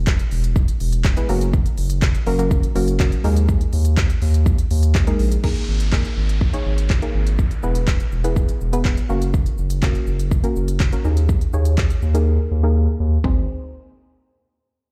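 Energetic and confident, this dance-pop excerpt moves at 123 BPM in a straight 4/4 in G# minor, tuned slightly low. A saturated sub bass, thick and sine-based with a fast attack, sits up front from the opening beat and pumps against the kick, while a layered deep house kit with a deep kick, woody snare and smooth hats drives the groove with claps, shaker, toms and crash cymbal. At 1.2 seconds a soft, round pluck enters in the mid register, its dark, wave-folded tone colored by chorus, a low-pass filter and the same sidechain pumping. The chords cycle through E, F#, D#sus4 and G#sus2, and from 5.4 seconds a filter sweep moves across the pluck as a faint electronic downlifter passes beneath. A silent gap from 12.3 to 13.2 seconds sets up the return on G#. The mix carries little reverb, with the sound of a big system in a bare room and a large studio reverb.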